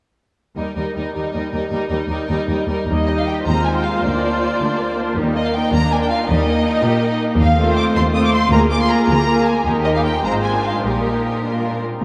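Bathed in the long, echoing wash of a vast cathedral, this graceful, lively classical-period movement for symphony orchestra sways in a flexible 6/8 with a touch of rubato. An intense, clear violin section carries the melody above a lush second violin line, while smooth violas fill in the accompaniment and the cellos supply a rich bass. A focused double bass section joins at 2.9 s to deepen the low end, and the passage is cut from a longer piece.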